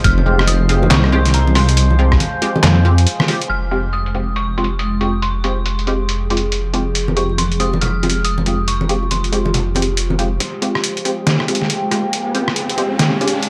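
Deep dubstep in F minor at 139 BPM with a swung, half-time feel, this heavy, dark cut opens on an Fmadd9 chord, where a deep, rumbling detuned saw bass sits up front with an overdriven, muffled trip hop sampler-style kit of snare, hi-hat, rim click and handclaps, while a thumpy kick, vintage congas and bongos, and muted dub chord stabs with echo sit around them. An eerie, inharmonic FM bell carries the high melody over a resonant, ring-modulated drone whose moving overtones are swept by a filter from 3.5 seconds. From 10.4 seconds the bass and bell have dropped away, and a build-up with a filter sweep, an electronic riser and a breathy, wind-like noise texture carries the dry, gritty, transformer-saturated mix to the cut at 13.5 seconds.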